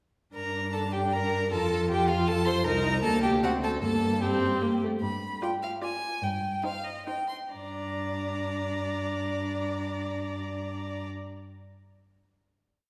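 This short, complete movement for string quartet opens at 0.3 seconds with the second violin and a dark, woody cello. The first violin and viola join almost at once. It is a quick, restless and urgent classical-period piece in G minor and 3/4, moving at 128-159 BPM with a rubato feel. The first violin carries the melody in a clear, focused, close voice with vibrato. The second violin, rich and smooth, doubles the tune at the octave and adds pizzicato accompaniment and sustained chords. The viola, also rich and even, adds tremolo, pizzicato and sustained chords, and answers at phrase ends. Beneath them the cello holds sustained and pizzicato bass lines. The harmony moves through Gm, F, Cm7 and D7 before a coda on G7 and Cm/G, and the tempo slows from 4.4 seconds into a final G minor chord at 7.5 seconds. The quartet sits in a wet recital-hall reverb that gives the sound the resonance of a church or concert hall.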